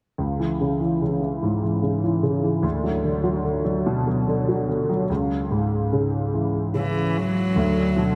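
A low, close grand piano with audible action noise and a touch of analog chorus opens this melancholic, aching six-eight pop ballad at 49 BPM in 6/8, tuned to A4 = 445 Hz, moving between C#m and Bm/D beneath a dreamy plate reverb until a warm, up-front single cello joins it at 6.8 s with an airy sul tasto bow, soft attack, light vibrato and a diffuse ambient delay, before the piece is cut off at 8.2 s.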